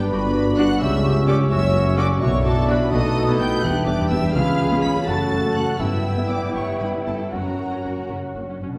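In a lilting 6/8 pulse of about 76 to 86 dotted-quarter beats per minute, pushed and pulled by rubato, this short cut from a fast romantic orchestral movement feels dramatic and restless. Symphonic violins carry the melody high in their range with a smooth, vibrato-laden sound, while a second violin line, a flute section with an airy tone and a very quiet, bright clarinet weave secondary lines beneath. A solo bassoon that sounds distant and roomy, mellow French horns holding sustained chords and close-miked trumpets adding short stabs sound from the start, and violas add lush, intense accompaniment from 0.6 s. A ringing, fingerpicked concert harp spreads arpeggios through the background. The bass is built from rich, expressive double basses, a very quiet tuba and dark, very quiet cellos gliding with portamento. Hard-mallet timpani sound briefly between 2.9 and 3.6 s, and the harmony moves from Gmaj7 through Bm and Em7 toward a closing F# chord, all set back in the long reverb of a scoring stage.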